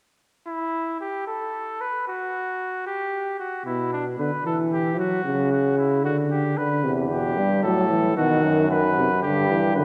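Solemn and contemplative, this classical imitative canzona for brass ensemble in E minor moves in a straight 3/4 at 113 BPM: a clear trumpet opens on the second line at 0.5 seconds, a warm trombone joins with accompaniment at 3.7 seconds, and a vintage-toned euphonium with light vibrato and a soft attack enters on the bass at 6.8 seconds, all set up front in a dark production bathed in a long, wet church reverb.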